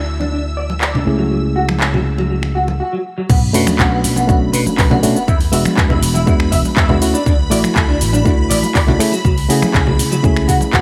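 A straight 4/4 nu-disco groove at 121 BPM in B dorian sets a sleek, sensual mood in this short cut from a longer piece. A reedy electric piano with dub echo, heard through its built-in speakers, opens under a filter sweep alongside growly slap bass and sawtooth string-machine chords with ensemble chorus and sidechain pumping. A slightly broken-up picked guitar riff bathed in lush chorus and bright, band-limited congas in the background join at 0.2 s, while a tape-warm pop kit with metallic hats, finger snaps, handclaps and shaker enters at 0.8 s. After a brief break, the drop lands at 3.3 s with a punchy layered electronic kick and a very quiet sub drop impact, as the chords move from Bm7 to E7 to D and F#m7/C# under light digital reverb.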